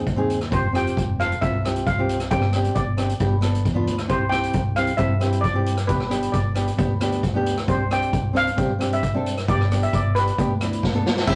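A fingerpicked nylon-string guitar, full-bodied and up front, opens this sunny, bouncy calypso in straight 4/4 at 134 BPM alongside a round, punchy fingered electric bass that sits in the background, and a small-room street-band drum kit joins almost at once with boomy kick, medium-tuned snare, rim click, hi-hat and dark crash cymbal. At 0.5 seconds a shimmering, metallic steel pan struck with hard rubber sticks takes the lead over suspended and added-ninth chords moving between G and C, and a drum fill at 10.8 seconds closes this rough rehearsal-room take, which is coloured by tube saturation, dulled highs and moderate studio reverb.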